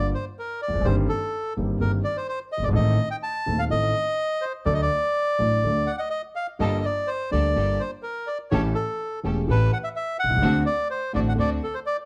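This sultry, dramatic tango excerpt in G minor moves at 126 BPM in 4/4 with a rubato feel. A dark, reedy bandoneon carries the melody up front, set in a plate reverb. Beneath it, a concert grand piano gives intimate, vintage accompaniment: smooth and warm, with deep low notes and audible action noise. A woody upright bass with steel strings plays pizzicato underneath. At 6.6 seconds a rich chamber string section adds bowed stabs with a period-style gut-string tone, sitting quietly in the mix until 11.6 seconds, when the piano and bass also stop. The harmony moves from Gm7 through Adim and D to A7 and D7, all within a moderate studio room sound.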